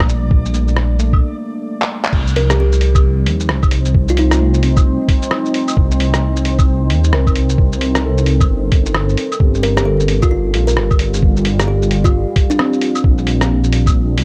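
A swung, shuffling future garage groove is carried by a muffled, pitched-down sampler kit of hi-hat, shaker, rim clicks, claves, handclaps and crash, with a thumpy, compressed kick and a deep, rumbling detuned saw bass sitting up front. A reversed, dreamy texture blooms in the background at the very start, while muted, warbling felt-like keys and a moody, slow-attack pad pump gently under sidechain, with the keys trailing an analog delay. A woody, close-miked kalimba melody with tape echo enters at 2.4 seconds and returns at 9.6 seconds, lending a melancholic, rainy feel to the cassette-tinged sound of this fragment.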